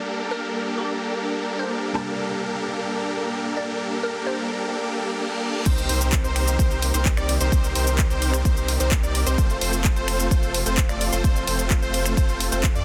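A straight 4/4 feel at 129 BPM drives this anthemic, euphoric slice of festival progressive house, cut from a longer piece and moving from Gmadd9 to Cm7 and then F. The opening features a glassy, crystalline wavetable pluck carrying the melody in the background with chorus, tape character and digital delay, over a dark, intimate baby grand piano whose action noise is audible under its pumping delay. A lush, airy unison pad holds sustained chords throughout and is filtered through a sweep in the intro. Huge, detuned supersaw chords sit up front with a gritty 12-bit sampler edge, pumping and delayed, while a very quiet reverse cymbal rises from 5.0 seconds. At the drop at 5.7 seconds, an impact lands as a punchy layered kick, a house kit of warm hats, ride, crash, snaps, claps and shaker, a deep, saturated sub bass and a catchy, bright unison lead playing arpeggios all arrive. The result is a dense, heavily limited modern master with a digital sheen.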